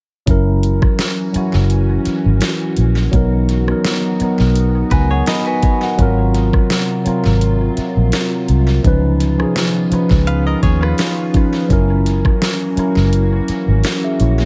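Tender and romantic, this short cut from a longer contemporary R&B piece settles into a gently swung groove that drifts through F#7, Bmaj7, G#13 and C#9 before returning to F#7. A mellow tine electric piano carries the accompaniment up front, its clean, direct tone colored by a phaser, and it plays a fill around 4.6 seconds. Beneath it, a vintage muted fingered electric bass sits close and round, dark and foam-muted, while a smooth, produced drum kit with a knocking kick, deep snare, metallic hats and rim clicks carries sampler grit and tape echo. A glassy FM pad hovers in the background with slow-attack, ethereal chords softened by ensemble chorus and its own reverb. A bright, twangy clean electric guitar, recorded direct and compressed, adds picked arpeggios with tape echo in two brief passages starting at 4.9 and 10.3 seconds, all within an echo-heavy digital ambience.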